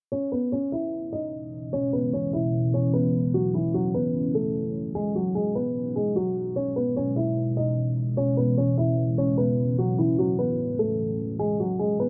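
A lush hall reverb and a rolled-off top end wrap this dark, melancholic hip hop excerpt, with a filter sweep running through its whole length. A mellow, worn grand piano carries the melody up front from the start, its action noise audible in the intimate sound. At 1.4 seconds a deep, detuned sawtooth pad with chorus and a sub octave enters, holding slow-attack chords through C#m7, F#m7 and G#m7 under a half-time feel.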